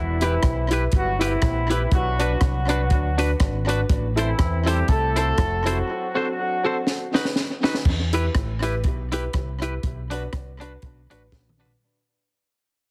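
A dark, vintage horn section leads this mischievous, driving ska clip in E minor at 121 BPM, its loose octave-doubled melody carrying light vibrato and tape echo up front until it drops out at 7.1 seconds, midway through the drum fill that closes the break. Beneath it, a round, amped fingered bass and a punchy compact cocktail kit with a high-tuned snare, dark cymbals, rim clicks and toms drive a swung groove, while a bright, twangy picked guitar and a woody upright piano with echoed stabs fill in the chords. Light reverb and a heavily compressed radio sound frame the track, which moves from Em through Bm, Am and F#dim to B before fading out from 7.8 seconds onward.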